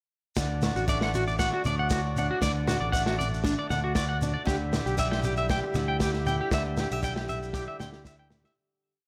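This highlife guitar band piece is carefree and sunny, a short whole piece that rides a single groove in straight 4/4 and moves from D to E minor at 4.5 seconds. Up front, a twangy, slightly broken-up electric guitar spins bright sixteenth-note arpeggios in threes, trailed by tape echo, while a picked swing-style acoustic guitar adds boxy, syncopated accompaniment with fresh-stringed sparkle. A fingered electric bass plays a round, punchy syncopated figure beneath, and a crunchy breakbeat drum kit keeps a gritty, saturated groove with a tight kick, a medium-tuned snare and a rolled-off top. A grainy shekere shakes from a distance, and a vintage combo organ holds buzzy sustained chords with light vibrato in the background. Light studio reverb surrounds the band, which begins fading at 6.5 seconds as the drums play a closing fill from 7.5 seconds.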